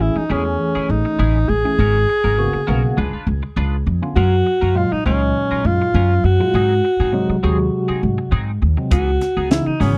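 A breathy alto saxophone sings an intense, slick, swung electric jazz fusion melody over a worn, slightly out-of-tune electric piano colored by overdrive, tremolo and phaser, bright clean stabs of chorus-tinged semi-hollow guitar and a woody, thumpy pizzicato upright bass in a dry, close 1970s-style studio sound, with a crisp drum kit with a high-tuned snare joining at 8.9 seconds.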